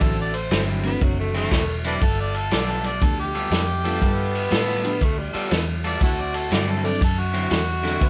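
A swung shuffle at 120 BPM in 4/4 drives this swaggering, gritty electric blues excerpt in D mixolydian, moving from D9 to G9 and back to D9. The vintage drum kit sits up front, with a punchy kick, a medium-tuned snare and a dark ride cymbal in a small room. Beneath it, the muted fingered bass is round, foam-damped and amped. An electric guitar at the edge of break-up picks a slightly broken-up riff, and a reedy electric piano with phaser fills in the accompaniment. Out front, a close-miked harmonica with overdrive carries the melody with tongue slaps, scooped notes and light vibrato, and from 0.9 s a raspy, growling tenor saxophone adds a second line. A soft-attack saxophone section places clear stabs in the background, and light reverb gives the feel of a band playing live in one room.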